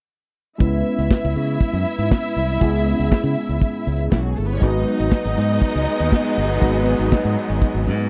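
A straight 4/4 groove at 120 BPM drives this danceable, glamorous disco excerpt in C# minor, with a modern drum kit sitting up front with a tight kick, smooth dark tone and rolled-off top, and a bright, direct fingered electric bass beside it. A barky, overdriven tine electric piano plays accompaniment through a combo amp with phaser and low-pass filtering, while a lush, clear bowed string section carries a second line with vibrato. At 4.6 seconds the harmony moves from C#m7 to G#m7 and a second, filtered string section enters with sustained chords, all within a dry, close 1970s-style studio sound and a filter sweep that runs throughout.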